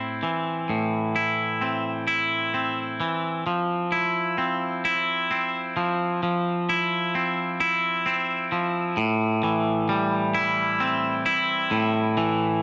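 Brooding and cathartic, this short rock passage in a straight 6/8 features a lone twangy electric guitar, bright, clean and picked with a scooped, up-front tone and an analog delay trailing its notes. Moving from Am to F5 at 3.5 seconds and settling onto Am7 at 9.0 seconds, it spans from low A2 up to E4. Light reverb and a digital ambience surround the guitar in a dark production, and the fragment is cut from a longer piece.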